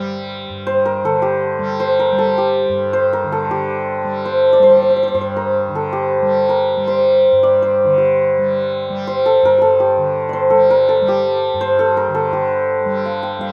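The recording sits in a moderate recital hall, whose reverb lends the acoustic instruments a gentle halo. This is Indian classical music in a straight three-beat metre, with a longing, introspective mood, and its pace gradually quickens throughout. The hammered santur carries the melody up front, its shimmering, ringing notes moving between G4 and G5. Beneath it, a softly plucked tanpura sustains a mellow, buzzing drone much lower in the mix, spanning G2 to G3. Both parts play from the opening to the close at 13.5 seconds; the melody repeats its opening idea before turning to a fresh passage at 12.3 seconds, in this extract from a longer performance.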